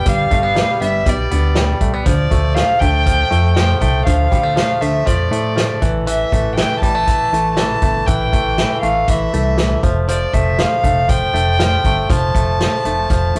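Jangly indie pop with a wistful, bittersweet mood, this fragment of a longer piece sets a floating, sul tasto violin melody over twangy, bright clean electric guitar arpeggios, a glossy, chorused pulse-wave synth bass and a vintage acoustic drum kit with a punchy kick and rolled-off top that enters at 0.1 s, all moving through G, Dm, A5 and F in a rough, saturated rehearsal-room sound with moderate reverb.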